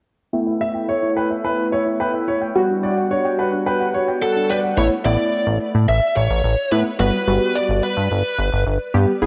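Worn, warbling cassette tape and a lush hall reverb color this bright, nostalgic pop excerpt, where a punchy, detuned polysynth comp plays throughout beneath a ringing handpan and an intimate grand piano that both stop by 4.7 seconds, while an overdriven lead guitar takes the melody from 4.2 seconds and a glossy, nasal synth bass enters at 4.8 seconds.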